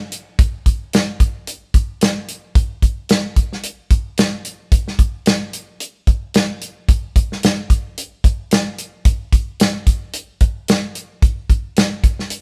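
A soul drum kit opens at 0.1 seconds and carries this short blues passage to its close at 12.4 seconds. Hi-hat, kick drum and snare drum sit up front in the mix, with a tight kick and a medium-tuned snare giving the kit an acoustic, natural character. The groove in 4/4 has a light swing on the sixteenths, lending the blues feel a smoky, soulful ease. The dry sound carries little reverb, and the recording has the feel of a band playing live together in one room. Cut from a longer piece, the passage stays within a single section from start to finish.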